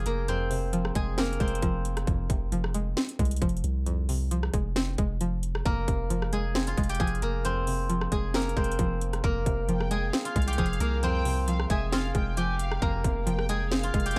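Hard-hitting and eerie, this half-time trap excerpt in F minor at 134 BPM sets a silvery, fingerpicked steel-string zither melody over a twangy, chorused resonator pluck, a deep sine-like 808 bass and an overdriven trap kit with a hard-clipped kick, sharp snare and metallic hats, all in a dark, dry production, with a floating, bowed violin section with tape echo joining at 9.7 seconds.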